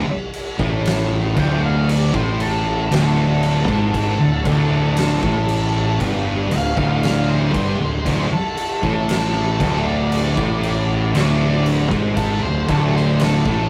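Hypnotic and sludgy, this slow 58 BPM stoner and doom metal excerpt rides a D5 power chord, with a growly, overdriven fuzz bass up front, a dark fuzz guitar riffing in the background beside a second, very quiet fuzz guitar and a faint, double-tracked bright overdriven guitar, an oversized low-tuned drum kit entering at 0.3 s with a fat snare, punchy kick and crash cymbal in a pumping stone room, and an octave-fuzz lead guitar soloing from 1.4 s, all captured as a rough rehearsal-room recording with tube saturation and moderate reverb.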